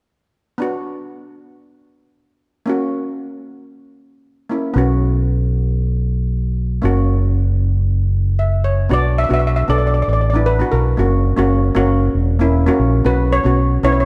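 A shimmering, boxy steel pan, double seconds struck with hard rubber sticks, opens this cool, brooding calypso excerpt in B harmonic minor at 116 BPM, adding a fill at 8.1 s before a bright steel pan melody enters at 8.9 s, while a fingered electric bass with an envelope filter joins at 4.8 s over Bm, F# and Bsus2 chords in a lightly reverberant mix.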